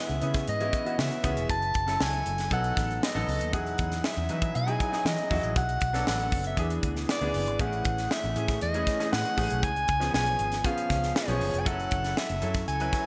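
Polished 1980s jazz-funk pop at 118 BPM in C# minor, this urban, nocturnal clip sets a mellow, smooth-topped soprano saxophone melody over an intimate grand piano with audible action noise and analog chorus, a dark, round, foam-muted fingered electric bass, and a crisp, up-front fusion drum kit with a high-tuned snare, punchy kick and gated reverb, all moving through chords from C#m7 to Emaj9, Amaj7 and C#7 in a lush hall and bright digital production.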